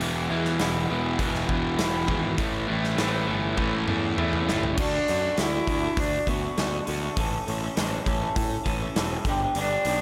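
Restless and bittersweet, this quiet-loud alternative rock passage in A major moves at 100 BPM in a straight 4/4, with a lo-fi, slightly broken-up guitar playing lush chorus-soaked arpeggios over growly fuzz bass and a punchy, up-front acoustic rock kit, while a bright overdriven guitar riff drives the opening until 4.8 seconds, overlapping a drum fill from 3.6 seconds, and a reedy, gut-string cello carries the melody from 4.7 seconds, all in light reverb and small-room ambience.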